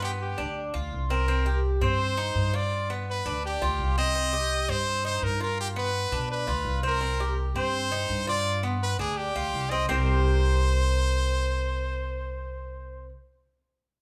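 Latin Cuban son and guajira in C minor at 167 BPM, sultry and warm, with a brilliant, punchy solo trumpet carrying the melody up front with vibrato over bright, metallic picked arpeggios from the double-strung tres and a woody, thumpy pizzicato upright bass on gut strings, the band heard live in one room through a wet large studio reverb.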